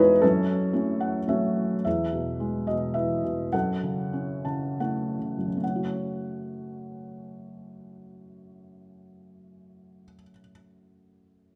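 A felt-muted upright piano sits up front in a wet recital hall, its soft, mellow tone carrying audible action noise that makes the sound feel close and intimate. This is a short excerpt of lyrical classical solo piano in 3/4, with a cool, brooding mood and a rubato feel that lets the pulse breathe freely. The single instrument spans from E2 up to A5, moving through three short passages across its 11.6 seconds. Gentle piano fills appear early and again just before the final passage, and the playing slows down between 1.9 and 5.6 seconds. The hall's lingering reverb wraps the natural, muted tone in a reflective haze that deepens the music's introspective character.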